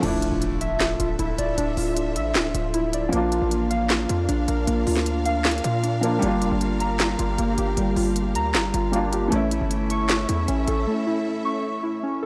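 Warbly, detuned lo-fi synth keys spin nostalgic arpeggios spanning G3 to C#6 through chorus, a low-pass filter and analog delay in this eerie, menacing trap excerpt. The hip hop beat sits at 155 BPM in a half-time 4/4 feel, driven by an up-front trap kit of sharp snare, crisp hats, handclaps and crash cymbal, alongside a punchy, heavy 808-style bass. Beneath them, a felt-muted upright piano adds soft, intimate accompaniment through a low-pass filter, while a lush symphonic string section holds bowed chords with expressive vibrato. A background riser and impact opens the clip and is over by 1.6 seconds. The harmony, in D harmonic minor, moves through Dmadd9, Bb, Gm7 and A, and the drums and bass stop by 10.9 seconds for a brief break, heard through a dry, gritty hardware sound with light digital reverb.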